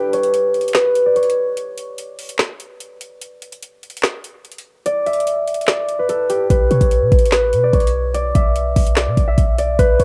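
A fingerpicked concert harp leads this dark, melancholic trap excerpt, its bright, ringing melody sitting up front between G4 and E5, softened by a low-pass filter and a cassette tape grit, with a filter sweep running across it throughout. The hip hop beat moves at 146 BPM in 4/4 with a half-time feel, carried by an electronic trap drum kit of knocking kick, woody snare, metallic hi-hats and handclaps that sits close alongside the harp from 0.1 seconds. The opening stretch plays as a break, and the kick drops out from 5.7 to 6.5 seconds. At 6.5 seconds a clean 808-style bass enters in the background, a deep, boomy sine tone with a fast attack and decay, ranging from A1 to B2 as the harmony settles on Aadd9. The sound is dry, with little reverb, and carries the character of a home recording on cassette.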